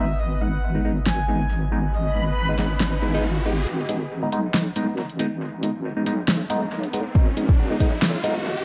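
A swung, half-time groove carries this dark, brooding deep dubstep fragment, with a deep, saturated wobble bass holding the low end from the start while a gritty, barky tine electric piano pushed through a combo amp stabs the G-sharp minor chord under a filter sweep, phaser and dub echo. A breathy, flute-like synth lead with tremolo and lush chorus and a reversed, dreamy swelling texture drift in briefly at the opening, before a deep house kit with a fat snare and metallic hats enters at 1.1 seconds and an electronic riser lifts the passage into a build-up from 3.7 seconds. An up-front, tape-warm electronic kick lands at 7.2 seconds in an echo-heavy mix with light reverb.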